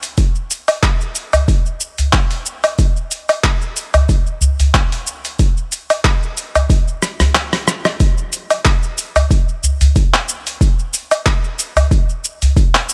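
Dry and close, this short, mystical downtempo excerpt at 92 BPM with a light 16th-note swing sets a gritty, compressed, overdriven soul-sampler kit of cabasa, handclaps, hi-hat, rim click and woodblock up front beside a deep, layered electronic kick that was re-recorded in a small room, while an acoustic udu adds deep tones from 1.3 seconds, and a drum fill at 7.0 seconds, with the kick dropping out at 7.4 seconds, leads into the second section at 8.0 seconds.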